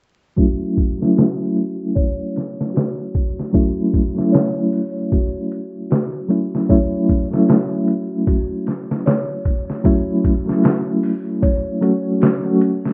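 Swung sixteenths in 4/4 drive this dark, melancholic trip hop excerpt, anchored by a gritty, pitched-down sampler-style drum kit with a thumpy kick and medium-tuned snare sitting up front. A reedy, clean electric piano with fast tremolo and tape echo provides accompaniment over an F#m7 chord. Above it, a delicate, tinkling music box plays arpeggios with boxy 12-bit grit, and a filter sweep runs across both parts from 0.4 to 12.9 seconds. The rough home-demo mix is dry and dull-topped, wrapped in vinyl crackle.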